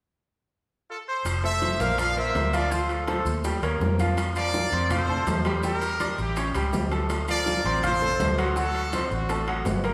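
Salsa with a joyful, danceable drive, cut from a longer piece, where a bright, tight trumpet section with light vibrato carries the melody from 0.9 s, soon joined by a dark, punchy foam-muted fingered electric bass, a brilliant grand piano with audible action noise, and percussion of ringing distant timbales, thin-skinned congas, very quiet round bongos and grainy maracas, set in a wet hall reverb.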